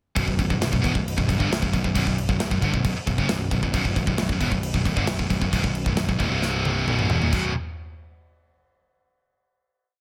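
Heavy metal in a dark, heavy mood, this short complete piece opens at 0.2 seconds with a power-chord riff built on B5, shifting to C5 near its close. Two picked electric guitars carry the riff in a low register: a bright, scooped high-gain guitar sits up front, while a sludgy, overdriven guitar with a warm tone stays in the background. A growly, direct picked electric bass plays a driving eighth-note line that doubles the guitar riff, tucked beneath the guitars. An acoustic modern studio drum kit, with a tight kick and a medium-tuned snare, pushes a metal drive groove up front and adds crash cymbal and toms, including a drum fill from 6.4 seconds. The band lands on a final B5 chord at 7.3 seconds that rings out to the end, all set in a small room ambience.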